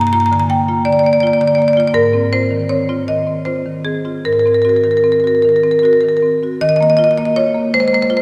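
Hypnotic and flowing, this excerpt from a contemporary classical piece for solo marimba moves in a rubato 6/8 at roughly 50-55 BPM, its harmonies drifting from Gm7 through Ab6 and Ab9 before settling onto Ebsus2 at 6.6 seconds. The marimba, played with medium hard mallets on padauk bars, sits up front with a woody, bright and percussive tone spanning G2 to Bb5. A wet cathedral reverb with a 4.7-second decay surrounds it, lending the church or concert hall setting a long, resonant tail.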